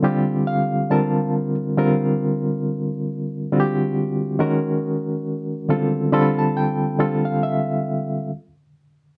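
A slow 69 BPM R&B groove in 4/4 with a light 16th-note swing carries this introspective, late-night fragment, where a solo reed electric piano, barky and reedy with light overdrive and fast tremolo, sits up front through its built-in speakers in a moderate studio reverb, playing fills at the opening and from 5.7 seconds over Dm7, C9sus4, Ebm11 and Dm11 before breaking off at 8.3 seconds.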